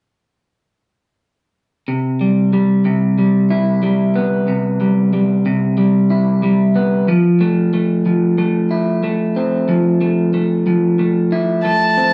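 An electric guitar through a small old amp opens at 1.9 seconds with picked, compressed, slightly broken-up arpeggios over Cmaj7 and then Fmaj7 in this hopeful, cinematic rock excerpt at 92 BPM, before a rich bowed violin with vibrato enters at 11.7 seconds on a single high melody note, both up front in a live band room with wet studio reverb and a soft, rolled-off top.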